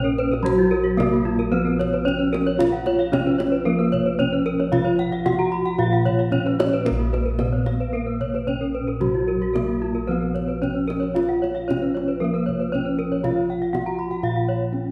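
A straight 4/4 pulse at 112 BPM drives this hypnotic, shimmering Balinese gamelan passage in Bb pelog, cut from a longer piece. Bronze bossed gongs anchor the bass from Bb1 up to Bb4, sitting up front with a round, beating, warm tone in a boxy small-room sound. Over them, a bronze metallophone struck with a wooden mallet carries the melody between Gb3 and Gb4, mid-forward and ringing with the shimmering beats of paired tuning. A second metallophone plays accompaniment from F3 to Cb4+35c, bright from its horn mallet but tucked in the background. Two more horn-mallet metallophones spin arpeggios high above, reaching Cb6+35c: one sounds airy, while the other has a boxier tone, and both shimmer from their paired tuning. A tight kendang, played with hard hands and heard in a small room, enters at 0.3 seconds, and a moderate concert-hall reverb lends the whole ensemble a lingering ring.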